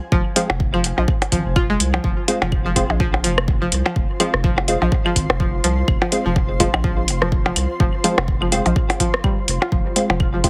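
A blurred, granular cloud pad fades in from the very start of this cut from a longer minimal techno piece, sitting mellow in the background with its own reverb and a sidechain pump. Almost at once a twangy, string-like resonator pluck carries the riff through chorus and dub echo, while a thick, saturated sub bass and a deep, up-front kick anchor the low end, the bass pumping along with the pad and pluck. From about 0.4 seconds a crisp, detuned wavetable chord stab with a wave-folded bite and delay joins, along with layered, metallic hi-hats that, like the kick, sound re-recorded in a small room. Tape-warm electronic blips, claves and a rim click fill in the percussion, also trailed by delay. Swung sixteenths keep the clinical, sparse mood moving over a single chord, and the mix carries a heavily compressed, radio-like sound with light reverb.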